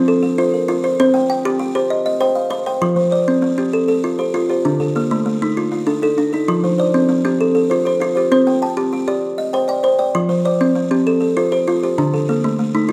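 A straight 12/8 pulse drives this mbira-style interlocking cycle, a piece of southern African traditional music that is cut from a longer performance. Two kalimbas play arpeggios together from start to finish across just under 13 seconds. The main kalimba, the louder of the pair, is thumb-plucked with a hollow-box, ringing tone that sits up front. The buzzing kalimba, plucked with the fingertips on a solid board, is woody, mellow and soft, with short buzzing notes that also sit close. The harmony moves between F, Cm and Dm before landing on a bare D5 near the end, giving the cycle a hypnotic, warm feel. A moderate recital-hall reverb surrounds both instruments.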